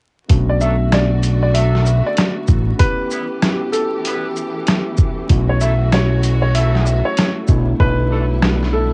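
A tough, gritty boom-bap hip-hop excerpt in B minor at 96 BPM opens at 0.3 s with a thumpy, overdriven sampler-style drum kit and a fat, sawtooth-edged analog bass up front, under a mellow tine electric piano and distant, lush bowed strings, all moving through Bm9, A9, F#m7/B and G69/B with a swung sixteenth feel. A clear, woody, slightly detuned upright piano carries the melody from 0.5 s with tape echo, while a vintage jazz-style horn section adds mellow stabs in the background, and a break runs from 2.8 to 5.3 s before the hi-hats drop out at 7.8 s. The dry, home-taped sound is dusty with cassette saturation and vinyl crackle, its top end dull and rolled off.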